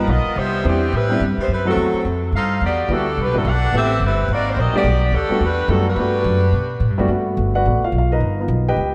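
A joyful big band swing cut in G major opens at a brisk 214 BPM, with a saxophone section carrying the melody in light vibrato and tape echo over a baby grand piano's accompaniment and a woody, growly pizzicato upright bass sitting up front. The harmony moves through rich jazz colours such as Cmaj7, Em9 and Ab9 before settling on Gmaj7, and the saxophones fall away at 6.8 seconds as the piano takes a short solo from 7.1 seconds toward a closing G7alt. A lush hall reverb bathes the mix in a dreamy glow.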